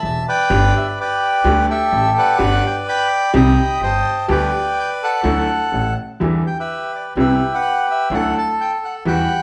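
A reedy, airy bandoneon melody leads this passionate, tense tango excerpt at 126 BPM in a rubato 4/4 feel, up front beside a bright, short-sustain upright piano accompaniment and a woody pizzicato upright bass, the three playing live together in a large studio with wet reverb as the harmony moves from G major to E minor at 6.2 seconds.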